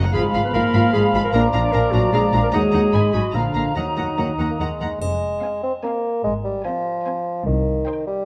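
An up-front, mellow bassoon carries the accompaniment through this playful, whimsical film cue in three, giving it a sneaky, magical air as it runs the full length of the passage, which is cut from a longer piece. Around it, a dark, veiled string body plays con sordino: a muted violin section takes the melody while a second violin section holds a background line, with violas, a lush symphonic cello section and a smooth-topped double bass section filling the accompaniment and bass beneath. In the opening half, a bright small flute group adds a pure, tongued line above a roomy solo clarinet and a distant cor anglais, while a dark French horn section sustains chords until about 4.6 seconds. At 5.0 seconds the harmony shifts into a new minor-key section, the flute, clarinet and cor anglais have fallen away, and a faint triangle glints briefly over the muted strings and bassoon. A moderate scoring-stage reverb lends the ensemble a soft, spacious sheen.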